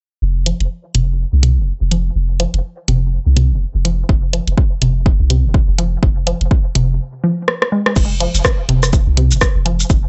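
A deep, punchy sine sub bass opens this sparse, hypnotic minimal techno excerpt at 0.2 seconds, pumping at 124 BPM with a swung 16th-note feel, a pitch-drop attack and a filter sweep over an F5 chord. A squelchy, detuned, resonant blip pluck soon carries the riff through a phaser and dub echo, pumping alongside the bass, while an overdriven garage kit of crash, hi-hat, rim click and shaker sits up front. A layered, overdriven electronic kick joins at 4.1 seconds, and a drum fill at 7.5 seconds leads into a new section in a dry, dark-topped mix.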